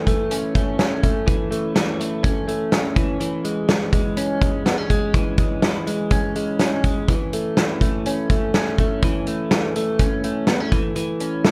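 A bright, clean electric guitar, recorded direct and compressed, opens this short cut from a longer jangly indie pop piece, picking arpeggios between E3 and C#4 through an analog chorus. A loose indie drum kit enters at 0.1 seconds with hi-hat, a punchy kick and a medium-tuned snare, its acoustic sound set in a roomy studio space that gives it a distant character even as it sits up front. The tempo is 124 BPM in a straight 4/4, and the mood is wistful and bittersweet. The harmony moves from A/E to E6 at 3.0 seconds, back to A/E at 7.1 seconds, and settles on A near the close. Light reverb softens the overall sound, and both parts carry through to the end at 11.5 seconds.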